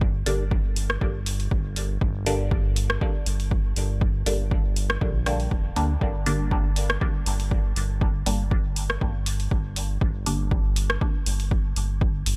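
A round, deep analog bass sits up front in this nocturnal, hypnotic dub techno excerpt, its mellow blend of sawtooth, sine and triangle tones sustaining and evolving under a sidechain pump, in G minor at 120 BPM with a gentle swing on the 16ths. A punchy, layered electronic kick anchors the 4/4 pulse from the very start, joined at 0.3 seconds by a produced deep house kit of hi-hat and rim click. Also entering at 0.3 seconds, a filtered dub chord stab of detuned sawtooth and square waves gives a muted, decaying pluck with a bright edge, treated with phaser, sidechain pumping and dub echo, and a filter sweep runs across it. The stab drops out at 10.5 seconds, leaving bass and drums to carry a single Gm chord. A digital ambience wraps the whole groove in a nighttime haze.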